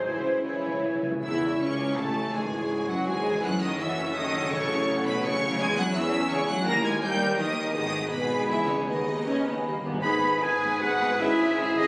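In a rubato 3/4 at roughly 150-169 BPM, this stormy, restless passage from a fast romantic symphonic movement opens in C# minor before turning to G# minor from 5.6 s. A lush, focused violin section carries the vibrato-rich melody, while a second, more distant violin line, smooth violas, cellos and clear double basses fill the background. A mellow French horn section holds sustained chords, and a ringing, fingerpicked harp spins arpeggios throughout. Pure flute, bright oboe and punchy clarinet add brief second lines at the opening and return at 10.0 s, joined briefly at the start by a dark, very quiet bassoon. Very quiet hard-mallet timpani fills sound at the start and again near 9.6 s, and the closing section from 10.0 s brings in roomy trumpet stabs and faint trombone chords. The whole orchestra sits in a wet recital-hall reverb, captured on a phone in the room.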